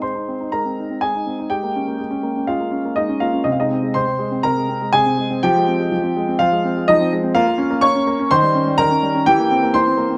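Close, detailed microphones and a light reverb place a warm grand piano up front, its present tone carrying a long sustain. This is a graceful, cheerful classical-period sonatina in Ab major, played solo at 123 BPM in 4/4 with a rubato feel and tuned to A4 = 438 Hz. The piano spans C3 to Db6 across the whole 10.2-second passage, which is cut from a longer piece. The harmony settles on Ab, moves through Eb7/Ab and Ab/C, then turns to Fm at 5.4 s and Bbm. It reaches Eb7 before closing on C7/E at 9.3 s.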